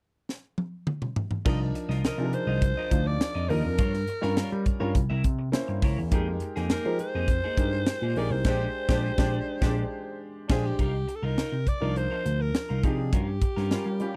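A raspy, gritty alto saxophone carries the melody from 2.1 seconds, its vibrato-laden pop tone touched with slapback echo, in this slick, bittersweet slice of polished 1980s jazz-funk pop in C minor at 103 BPM. A crisp fusion drum kit opens with a fill at 0.3 seconds, its high-tuned snare and tight kick sitting up front alongside hi-hat, crash and toms. A clear grand piano slips in at 1.4 seconds with chorus-treated accompaniment, and at 1.5 seconds the rest of the band falls in: an overdriven tine electric piano takes the bass role with a barky, amp-driven bite and a phaser, and a picked, compressed electric guitar at the edge of break-up plays a riff, also through a lush chorus. The harmony moves through rich minor-eleventh and altered chords, from Cm11 through C7b9 and Fm11 to Bb13. At 8.5 seconds the band hits an accent, and a horn section with a smooth top and light vibrato adds a background second line before the Cm11 returns. 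The sound is dry and close, in a 1970s-style studio with little reverb, and this is cut from a longer piece.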